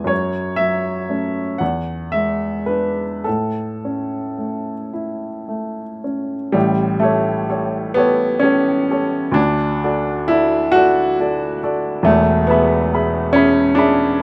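Classical romantic nocturne for solo piano in A major, tender and dreamy, moving slowly at 34-48 BPM in 6/8 with a free, rubato feel. An upright piano carries everything from 0.0 to 14.2 seconds, its woody tone polished and sitting up front, reaching from the deep bass around E1 to B5 in the treble. The opening passage drifts through F#m, E7 and A before a second section begins at 6.6 seconds on A7, passing through D and settling on E. A light reverb gives the instrument a soft sense of space while keeping it close and present. The recording is cut from a longer piece, ending on the E chord as if more is to follow.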